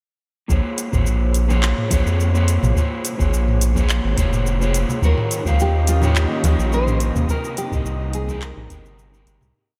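Sunset chillout in Bb dorian at 106 BPM, this short, complete piece moves with a relaxed, smooth groove and a gentle sixteenth-note swing over chords of Bbm7, Eb7 and Cm7. A round, deep analog bass sits up front with a syncopated riff and tube saturation, while a soft, tape-warm electronic kick stays in the background beneath a light lounge beat of metallic closed hats, cabasa, claps and low tom. A dark, slightly broken-up electric guitar plays fingered dotted-rhythm chords in spread voicing through a low-pass filter and tape echo, with very quiet, close and dry congas joining at 1.5 seconds. At 5.0 seconds a fingerpicked nylon-string guitar brings a motif-based melody with its own tape echo, soon joined by a breathy, chorused pad and a faint wind-like noise texture holding a high note with built-in reverb. The piece fades out from 6.5 seconds to its end at 9.6 seconds, all under a light reverb.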